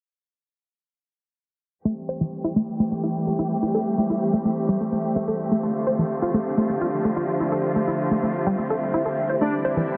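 This dark, cinematic techno excerpt in A minor at 127 BPM opens at 1.9 s with a lush studio string section holding low-passed sustained chords and a tight, driving sequenced sawtooth arpeggio with chorus, phaser and dub echo, both under filter sweeps as the harmony moves from Am7 to Dm7. From 2.4 s, a warbling, nostalgic lo-fi pad adds slow-attack texture through its own chorus, built-in reverb and phaser. At 9.4 s, on a Cadd9 chord, a bold, fat analog synth brass note sounds briefly with a mellow supersaw line set in the background, all bathed in huge ambient reverb and a dense, heavily limited master.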